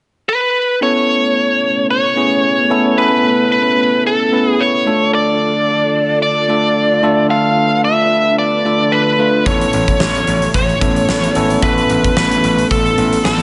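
A moderate plate reverb and a gently rolled-off top end give this nostalgic, romantic 1980s-style pop excerpt its glow. An overdriven, biting lead guitar carries the melody up front from the start, joined at 0.8 seconds by a bell-like tine electric piano and a lush, vintage string machine with ensemble chorus that holds sustained chords in the background as the harmony moves from Aadd9 to Dm and back. At 9.5 seconds a gritty slap bass and a huge arena drum kit, with its punchy kick and gated reverb, arrive together.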